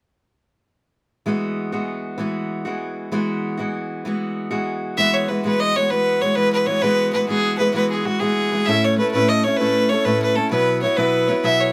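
Celtic folk in a rollicking, lively 12/8 at 130 BPM in E major, cut from a longer piece, where a picked steel-string acoustic guitar with audible finger squeak picks out the Eadd9, A and Bsus4 accompaniment from 1.3 seconds before a single biting, nasal, earthy bowed fiddle enters up front with the melody at 5.0 seconds, all captured by close, detailed microphones with light reverb.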